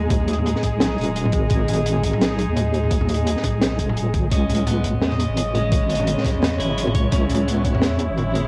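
Half-time drum and bass with a heavy, tense mood, cut from a longer piece and carrying the character of a home cassette recording in a small room. A deep, detuned wobble bass sits up front with a chorus shimmer, beside a crunchy, saturated breakbeat kit with a high-tuned snare and a knocking electronic kick, while a distant bowed chamber string section pumps under sidechain compression and a flickering granular texture drifts in the background. At 4.3 s, as the harmony moves from G# minor to C# minor, a clean picked electric guitar enters with background arpeggios roughened by 12-bit sampler grit and tape echo.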